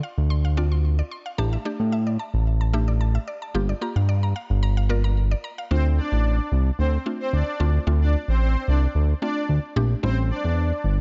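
A woody, mallet-like synth pluck opens this confident, driving pop excerpt, one layer comping on chords through chorus while a brighter one spins arpeggios through phaser and delay, as a fat, saturated analog bass sits up front from 0.2 seconds, and at the drop at 5.7 seconds the arpeggios give way to a smooth, softly attacked supersaw melody with delay, all in a dark digital ambience.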